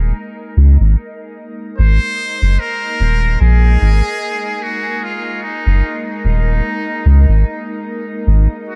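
A lightly swung 4/4 groove settles in from the first moment, carried by a deep, round sub bass that sits up front and holds the low end of this spacious, peaceful ambient dub fragment, cut from a longer piece. Around it, a breathy, detuned pad with chorus and phaser drifts in the background, sustaining a single suspended chord. At 1.8 seconds a distant, buzzy trumpet with a metal mute enters with a thin, lightly vibrato-tinged solo line trailed by dub echo, all set in a dark studio reverb.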